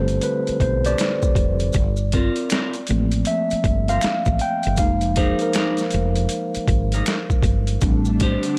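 A clean tine electric piano plays solo up front from the opening of this smooth, soulful R&B and neo-soul clip, over a round, woody fretless bass and a gritty, compressed, pitched-down boom bap kit with a thumpy kick, high-tuned snare and overdriven grit, while maracas and finger snaps sit in the background of a swung groove. At 0.9 s a dark, picked semi-hollow guitar adds a phased second line, and the chords glide through minor eleventh colours from Am11 to Gm11 and Fm11. At 7.8 s, as the harmony returns to Am11, a bright, swirling sawtooth string machine enters with slow-attack sustained chords treated with ensemble chorus and phaser, all set in light digital reverb.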